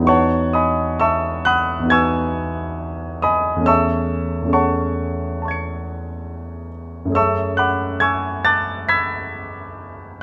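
Serene and dreamy, this short cut from a longer impressionist classical work features a solo concert grand piano, natural and up front with deep bass, drifting in rubato at 68 BPM in E major through Emaj9, Amaj7/E and F#m9 chords across a range from E2 to C#7, caught by close, detailed microphones in light reverb.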